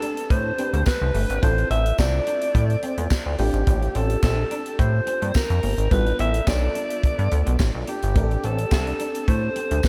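A light, small-room sheen and a polished, dry drum sound frame this slick, funky stretch of early-eighties boogie funk, cut from a longer piece and moving at 107 BPM in a straight 4/4 in A minor. Up front, a growling alto saxophone carries the melody in a raspy, breathy jazz-style solo, with vibrato, subtone and scooped notes giving it a gritty vintage edge. Beneath it, a tight funk kit drives the groove with a snug kick, a medium-tuned snare, hi-hat and handclaps. A chorused synth bass joins at 0.3 seconds, glossy and nasal, its pulse-wave and sawtooth tones shaped by a plucked filter, pulse-width modulation and a moving notch. Further back, a glassy FM electric piano adds bell-like chords through chorus and phaser, a clean, picked semi-hollow guitar plays a hollow-toned riff with ensemble chorus, and a jingly, distant tambourine enters at 0.9 seconds. The harmony moves from Am11 through Dm9/A, Bb6 and G7/A before returning to Am11.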